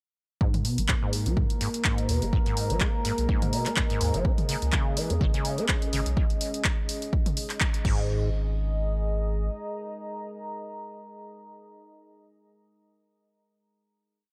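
A four-on-the-floor kick, overdriven and up front, drives this raw, hypnotic acid house piece at 125 BPM in 4/4 with a light 16th-note swing, joined by a punchy analog drum machine playing closed and open hats, claps, mid toms and crash, while a squelchy, resonant sawtooth acid line with accents and slides runs a 12-step loop that drifts against the bar, overdriven with lush chorus and tape echo over a thick, saturated triangle sub bass riff. A smooth, detuned analog pad holds sustained chords with a high note from G#m7 toward C#5, pumping under the sidechain, and a moody, chorused ambient pad with built-in reverb enters at 1.7 s with slowly shifting dark chords. After a band accent at 7.6 s and a move to G#5, the groove gives way at 8.1 s to a final held note, with the sub bass sounding until 9.5 s and the ambient pad lingering until 11.7 s.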